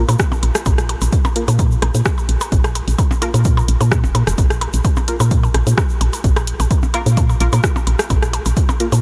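A lightly reverberant, hypnotic and quirky minimal techno cut from a longer piece, built around an up-front, round, woody FM bass that pumps against the sidechain and a punchy, tape-warm electronic kick. An analog drum machine supplies hi-hat and rim click, while overdriven electronic blips and rim clicks echo through analog delay and a grainy egg shaker sits close but in the background. Muted, deep sawtooth dub chord stabs with a filter pluck sit behind it all, thickened by ensemble chorus and analog delay.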